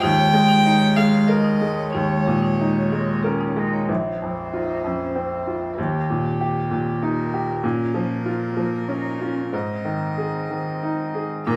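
Neoclassical piano and strings in 3/4 with a rubato feel, this short passage from a longer piece carries a longing, fragile mood. A bright upright piano sits up front with a woody, open tone and long sustain, providing the accompaniment across a deep range. A single bowed violin carries the melody with a soft attack and a pure, floating sul tasto tone. A lone cello plays a second line in the background, intimate and airy-bowed with light vibrato. A marimba struck with hard mallets adds percussive arpeggios until 3.8 seconds and returns only briefly at 11.5 seconds. The players sound live together in one large studio, bathed in wet reverb, as the harmony moves from an opening Eb7sus4 through Bbsus2, Eb, Bbm and Ab once the second section begins at 3.9 seconds.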